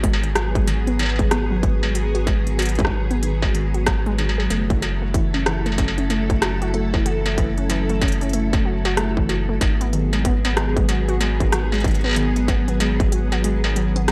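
This cerebral, intricate IDM excerpt opens with everything at once at 94 BPM: a swung groove of distorted electronic kick and an industrial kit of smooth hi-hats, rim clicks and struck metal, both re-recorded in a large room, under a deep, nasal analog bass sitting up front. A silky string machine with phaser and ensemble chorus holds sustained chords moving from G#m7 to F#m7 and back, while a warbling, detuned lo-fi pluck with a noise layer, filter sweep, chorus and analog delay spins mellow arpeggios above. The whole excerpt has a dry, gritty cassette-tape character in a digital ambience, and the kick stops at 13.1 seconds as the clip ends at 14.1.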